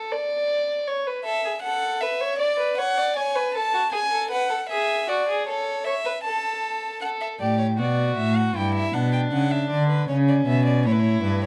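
Closely miked with light reverb, this lively, stately excerpt of a baroque-style fugue in D major at 78 BPM opens with a dark, nasal period-style violin on the second line, joined at 1.2 seconds by a rich, reedy gut-string violin carrying the melody, before the passage moves into a new section at 7.0 seconds and a smooth-topped cello enters on the bass at 7.4 seconds, sitting louder than both violins.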